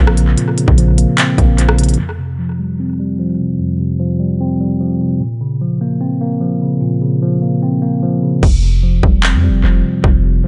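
The mix is dry of reverb but heavy with echo, and its top end is dark, cut off above 10.6 kHz. This short cut from a longer hip hop and trap track moves at 149 BPM in a half-time 4/4 feel, tuned to A4 = 438 Hz, with a melancholic, menacing mood. A mellow tine electric piano sits up front through a low-pass filter, as if heard through built-in speakers, playing clean chords that move between Bbmadd9 and Fsus2. It plays alone from 2.0 to 8.4 seconds, where a filter sweep passes over it. Around it, the deep, boomy 808-style bass, a sine tone with a noise layer, fast attack and decaying tail, opens the piece with an electronic trap kit entering just after, and both return at 8.4 seconds. The kit's hard-clipped kick, handclaps, rim click and crash sit forward with analog delay, and its crisp hi-hats are heard in the opening stretch but fall silent when the drums return.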